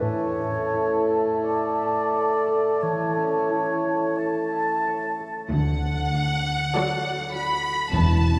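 A church reverb with a long 3.6-second decay surrounds this short cut from a slow, lyrical romantic orchestral movement in A major, played with rubato at about 42-52 BPM in 4/4. A dark clarinet, a mellow, hollow flute, an up-front oboe and a present bassoon open over ringing, thumb-plucked harp arpeggios. At 5.5 s, as the harmony moves to D, the violins take the melody with expressive vibrato and portamento over a rich double bass section and focused cellos. At 6.8 s, lush background violins and violas add inner lines, and soft-mallet timpani enter very quietly at 7.9 s.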